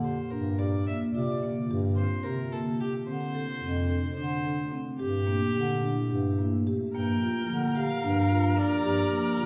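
Restless and urgent, this excerpt of contemporary chamber music moves in 7/8 at 218 BPM in eighths, centred on G dorian over chords that begin on Gm7. A distant, floating violin carries the melody with soft attacks and a sul tasto tone, while a woody marimba with soft mallets plays arpeggios, a smooth, classical-style bass clarinet holds the low line, and a glassy FM pad with ensemble chorus sustains chords in the background. At 6.9 s a clear viola enters with a focused, vibrato second line, all set in a reverberant recital hall.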